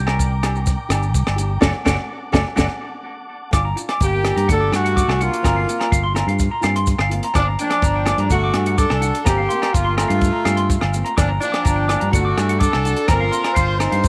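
Warm and bittersweet, this highlife guitar band moves in a straight four, and the clip is cut from a longer piece. A bright, twangy clean electric guitar opens with picked arpeggios soaked in tape echo, taking a short solo turn while the band hits an accent, and keeps spinning its figures throughout. Beneath it, a round, up-front fingered electric bass and a dry, compact cocktail drum kit with a high-tuned snare, a punchy kick, hi-hat and rim clicks drive the groove. Ringing, vintage-sounding agogo bells and grainy, saturated maracas sit behind them, along with a fingerpicked flamenco guitar played with fresh strings. A soft, flute-like tonewheel organ with key click and slow rotary speaker holds chords in the background, dropping out at 3.5 seconds and returning at 11.2 seconds. At 4.0 seconds a tight, jazz-style horn section with a warm tone steps to the front with the melody, its lines trailed by tape echo in a light studio reverb.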